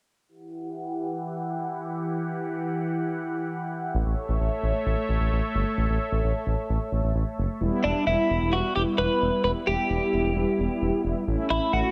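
Pop at 131 BPM in E dorian, melancholic and cool, opening with a swirling, detuned analog pad whose phaser, chorus and filter sweep color sustained chords moving from Emadd9 to A. A smooth synth bass built from sawtooth and triangle tones arrives at 3.9 seconds, and at 7.6 seconds the pad gives way to dark, brassy synth brass with chorus, soon joined by a twangy, clean twelve-string electric guitar carrying the melody over Em and A. Light reverb and digital ambience surround this short cut from a longer piece.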